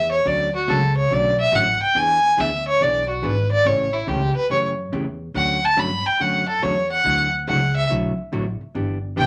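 Down-home and playful, this short western swing excerpt features an up-front fiddle solo, bowed with light vibrato and a focused, smooth top, over a woody pizzicato upright bass and a dark, clean hollow-body jazz guitar fingering chords through Dmaj7, E7 and A7 in a swinging 4/4, all set in a wet club reverb.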